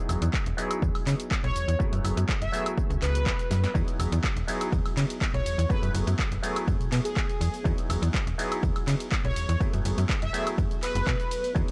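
A dry, gritty cassette-tape sound frames this funky, sunny stretch of filtered disco house, where an up-front, snappy FM slap bass with tube saturation and a nasal, hollow clav run through a phaser over an overdriven electronic kick and a tape-warm analog drum machine of claps, hats, ride, shaker, snare and woodblock, all pumping to the sidechain except the kick, while a bold, detuned analog synth brass melody with chorus enters at 1.4 seconds and a drum fill lands at 3.5 seconds over alternating Emaj9 and F#m11 chords.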